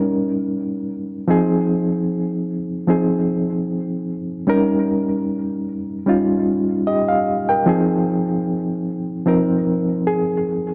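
A reedy, worn electric piano plays alone through its built-in speakers, slightly out of tune and up front, its fast tremolo and tape echo shimmering over a moderate plate reverb that lingers for about 2.7 seconds in a dark, warm production. This bittersweet, cinematic soul fragment moves at 75 BPM in F minor with a light sixteenth-note swing, its chords shifting between Eb7 and Fm7. The piano ranges from F3 to G5 across the roughly 10.7-second excerpt, cut from a longer piece.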